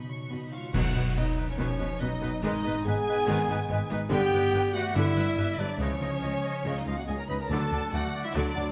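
Cinematic heroic adventure film score at 142 BPM, soaring and adventurous, where lush vibrato violins carry the melody over a softer violin second line, rich violas, a ringing harp, rich cellos and woody double basses, while a tight mellow French horn section holds chords, a distant trumpet adds stabs, clarinet, bright oboe and an airy, very quiet flute ensemble weave second lines, and a band accent at 0.7 s brings dark clash cymbals with bass drum and round soft-mallet timpani, all set in a moderate scoring-stage reverb over a Badd9, G#m, G, C#add9, D progression.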